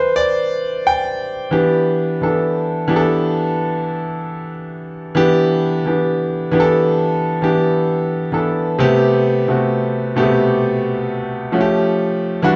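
Soulful and introspective, this slow R&B passage at 66 BPM in E minor unfolds on a lone concert grand piano, swung gently on the sixteenths and tuned slightly flat at A4 = 438 Hz. The up-front piano sounds clear and natural, with deep bass and long sustain, resting on Em7 before moving to Am9 at 8.8 seconds and an Aaug7 at 11.5 seconds. A wet, large studio reverb surrounds it with a live-room feel, and the top end is cut off entirely above 7.7 kHz.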